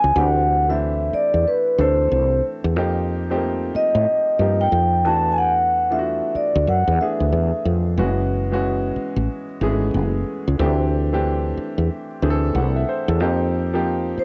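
A swung sixteenth-note feel carries this soulful, introspective R&B and neo-soul passage, where a metallic, ringing vibraphone played with medium mallets and colored by cassette tape sings the melody until 7.6 seconds over clear, short-sustained concert grand piano accompaniment and a growly, round fretless electric bass, all placed up front in a home cassette recording with light reverb and studio ambience as the harmony moves through D9sus4, F9sus4, E9sus4 and F#9sus4.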